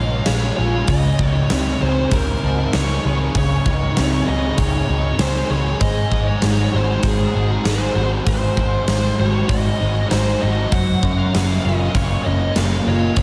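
A dreamy, reverb-soaked mix bathes this short cut from a longer shoegaze and dream pop rock piece in a lush hall that lingers for about 2.5 seconds, giving it a wistful haze. At 98 BPM in a straight 4/4, a double-tracked fuzz guitar sits up front with a dark, distorted riff thickened by ensemble chorus, while a compressed fuzz lead guitar carries the melody through distortion and analog delay. Underneath, a vintage electric bass, picked and foam-muted, offers a round, amped low end. A huge arena drum kit joins at 0.3 seconds with hi-hat, a punchy kick and a medium-tuned snare ringing in the hall. The harmony drifts from Bbm7 through Dbsus2 and Ab7 before settling on Gbmaj7 near 10.7 seconds.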